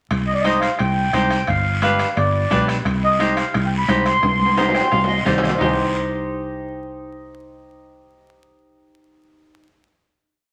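This short, complete cumbia piece opens at 0.1 seconds with a driving, fiery groove at 175 BPM in C harmonic minor. The bombo, congas, guiro and timbales enter together, with the bombo, congas and timbales set back in the mix, under a foam-muted fingered electric bass playing a cumbia figure up front. A mellow, reedy accordion with slow beating carries a motif-based melody in period phrases. A dark, clean electric guitar adds picked triad chords through spring reverb. The harmony moves from Cm to G7 and back to Cm, and a drum fill at 4.2 seconds is followed by a guitar fill at 4.6 seconds before the percussion and accordion drop out. The bass and guitar hold a final chord through to 9.7 seconds, under a wet studio reverb and a layer of vinyl crackle.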